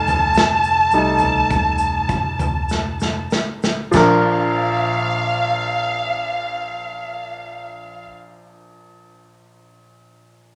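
This tender, emotional pop ballad fragment opens on a clear, polished baby grand piano, up front and featured through the first 3.9 seconds, with a lush, bowed violin section singing a second line high above it. The pace is slow, around 47-54 BPM in 4/4 with a straight feel in Bb major, and the opening passage gradually slows down. A loose, acoustic indie drum kit with a tight kick, medium-tuned snare, crash and toms sits up front in a pumping small room, rolling into a fill from 2.7 seconds. Beneath it, a deep, round, punchy fingered electric bass stays dark and in the background, while a grainy, mellow tube shaker adds close, dry texture far back in the mix. As the harmony moves from F7 to Bb, a new section begins, with the expressive vibrato of the strings carrying on before the piano rings on alone to 10.6 seconds in a moderate large studio reverb.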